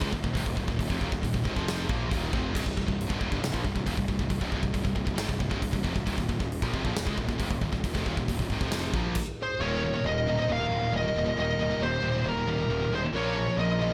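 Heard in a small room, this epic, heavy metal piece at 136 BPM sets two bright, high-gain riffing guitars, one scooped, in the background over a growly fuzz bass and a big, up-front acoustic kit with a punchy kick and medium-tuned snare that stops at 9.3 s. A warm, distorted lead guitar then carries the melody up front over a dark, bluesy second line, joined by a double-tracked riff guitar at 9.6 s, as the chords move from Eb5 and Cm to Eb and Bbm.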